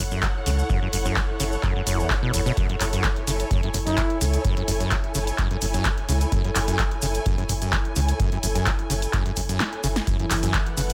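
Raw, driving acid house in which a squelchy, resonant sawtooth acid bass riff with overdrive, delay and sidechain pumping rides over a round, mellow sine sub bass, a grainy, distant tube shaker and a dark, woody symphonic string section, while a deep electronic kick and a dry analog drum machine with handclaps, hi-hat and a punchy snare drive the groove, a veiled, bucket-muted jazz trumpet drifts in briefly at 3.9 s with dub echo, the kick drops out for a drum fill at 9.6 s, and a smooth, detuned analog pad with chorus enters at 10.1 s.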